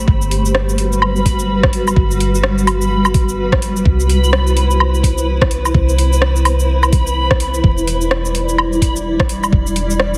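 A heavily compressed, radio-like sound with vinyl crackle and light digital ambience frames this ghostly, melancholic future garage excerpt at 127 BPM in 4/4, swung on the sixteenths and moving through Gmaj7, Cmaj7 and Em7. A cloudy, detuned granular pad holds sustained chords with built-in reverb and sidechain pumping over a deep, round 808-style bass that also pumps, while a reversed, bright granular texture swells on B5. An overdriven, knocking electronic kick plays from 0.1 s to 9.6 s, and an up-front garage kit of metallic hi-hats, rim click, shaker and woodblock, also overdriven, joins at 0.2 s.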